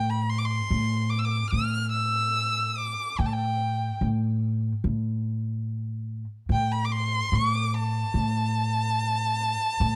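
A single bowed violin, dark-toned and up front with vibrato, portamento, a soft attack and a slapback echo, sings a hypnotic, longing melody high in its range over a woody, thumpy pizzicato upright bass on gut strings in this 10-second excerpt of a Persian modal ensemble piece in A dastgah shur, tuned to A4 = 444 Hz and moving at a straight 73 BPM in 4/4, captured in a dry, close 1970s-style studio sound.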